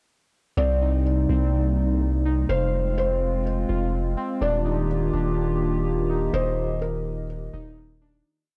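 A deep, up-front 808-style bass holds long sine sub-bass notes beneath a dark, detuned tape-like pad, a felt-muted upright piano playing a sparse looping melody with audible action noise and analog delay, and warbly lo-fi synth keys playing a threes arpeggio in eighths through phaser and chorus, giving this ethereal, melancholic half-time cloud-rap piece over Cm7, Fm and Ebmaj7 a gritty cassette-saturated sound before it fades out from 6.3 seconds.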